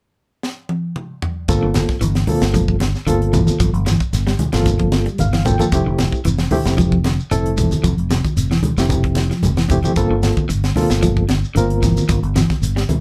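A straight four-beat afrobeat groove opens with a tight funk drum kit fill, its high-tuned snare crisp and dry, before a round, up-front fingered bass and a grainy shekere join at 1.5 seconds, with low-tuned background congas following at 1.8 seconds, beneath a barky, reedy electric piano shimmering with fast tremolo, which plays a fill from 4.9 seconds, and a slightly broken-up electric guitar picking tremolo-tinged arpeggios, the whole excerpt funky and driving in a lightly reverberant live room as the harmony moves from Gm11 to Fmaj7 and back.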